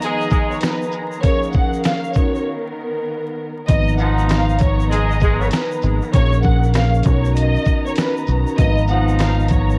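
A dusty, sampler-style drum kit with a thumpy kick and fat snare drives this tough, gritty boom-bap hip-hop excerpt at 98 BPM in G# dorian, under a lush, tape-worn violin melody, mellow vibraphone, dark sul tasto strings, distant horn stabs and a grainy egg shaker in the background, before a deep, round dub bass enters at 3.7 seconds, all wrapped in small-room ambience and vinyl crackle.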